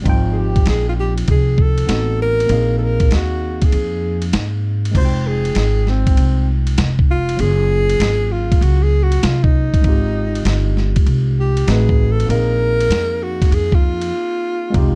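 A swung sixteenth-note groove at 98 BPM in 4/4 drives this nocturnal, cool jazz-hop cut, taken from a longer hip hop piece. A gritty, compressed sampler-style drum kit with a thumpy kick and a medium-tuned snare sits up front beside a woody pizzicato upright bass. A worn, slightly out-of-tune tine electric piano plays the chords at a lower level, heard through its built-in speakers. Over this, a breathy alto saxophone carries the melody with vibrato, scooped notes and a soft attack, close-miked and intimate, and it takes a solo from 5.0 seconds. The harmony moves from Fm9 over Ab through Adim7 and Bb7sus4, later turning to Gbmaj9 before circling back, with a break at 3.7 seconds leading into the solo. Light reverb and a dark production give the track a hushed late-night feel.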